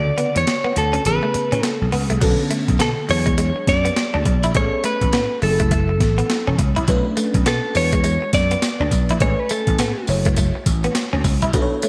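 A swung sixteenth-note groove at 103 BPM in 4/4 drives this punchy, confident slice of new jack swing R&B in B dorian, cut from a longer piece. The boom bap sampler-style kit sits up front with a thumpy kick, high-tuned snare, hi-hat, crash and tambourine, sounding gritty and pitched down, with overdrive and gated reverb giving it a roomy, compressed punch. A growly, amped slap bass anchors the low end, while an FM electric piano with a soft pad layer spreads dreamy, detuned chords through chorus and phaser, moving from Dmaj7 and Amaj9 into a cycle of Bm9, E13, Amaj9 and F#m7. Two clean, direct-recorded electric guitars round out the arrangement: one carries the picked melody up front until 10.0 seconds, and the other plays a twangy riff in the middle register, bathed in lush chorus. A short break opens the clip before the main section arrives at 2.2 seconds, all framed by a bright 1980s-style digital sheen and a moderate hall reverb.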